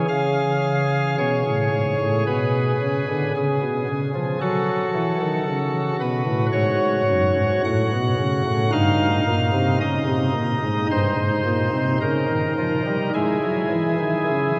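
A pipe organ's nasal cornet solo stop, in a baroque voicing with chiff and tremulant, sits up front and carries this dark, solemn chorale-style classical passage alone, spanning F#2 to F#5 at a slow, rubato pace in 4/4. Its harmony moves from C#7 to F#m, then D#7/G, coming to rest on C#m at 13.1 seconds. A long, wet cathedral reverb of about 5.5 seconds surrounds the organ, heard from further back in the room, as this short cut from a longer piece runs to 14.6 seconds.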